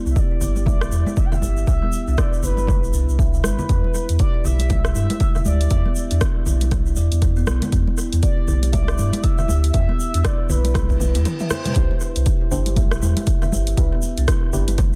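A punchy, up-front electronic kick and a deep house kit of hi-hat, rim click and toms drive this hypnotic, spiritual afro house cut at 119 BPM in E minor, with a 16th-note swing, a grainy tube shaker, and ringing, close congas sitting back in the echo-heavy, nearly dry mix. A round, sine-like sub bass with tube saturation pumps beneath woody kalimba arpeggios soaked in dub echo, while a smooth, dark sawtooth lead glides with portamento and vibrato through a lush chorus over Cmaj9 and E7(no3). At 11.0 seconds a reverse cymbal and drum fill lead into a brief break, and at 11.8 seconds soft, nasal chord stabs with tape echo enter on the return to Cmaj9.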